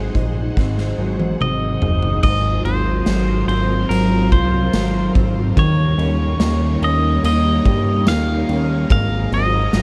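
A blissful, floating dream pop excerpt at 72 BPM opens with a lush string machine in the background, a slightly broken-up electric guitar playing arpeggios with lush chorus and tape echo, and a fat, saturated analog bass up front over Ab7 and Ab13 chords, as a gritty garage drum kit in a pumping stone room plays a fill, a clean pedal steel guitar enters at 1.4 seconds with a slide melody in volume swells and tape echo, and a ringing, bell-like glockenspiel appears at 8.9 seconds, all within a dark studio reverb.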